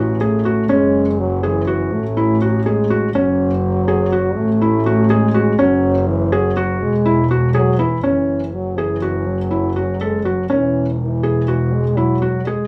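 Playful and restless, this short cut from a longer piece of contemporary chamber music moves in an uneven 5/8, with a soft, felt-muted upright piano playing intimate arpeggios up front amid audible action noise, a rich, reedy bowed double bass carrying the bass line with light vibrato and a gut-string, period-style tone, and a dark, smooth-topped solo French horn singing a classical second line, all in light reverb, as the harmony shifts from rocking A5 and F#5 chords through Eadd9 to an F#7(no3) at 8.0 seconds.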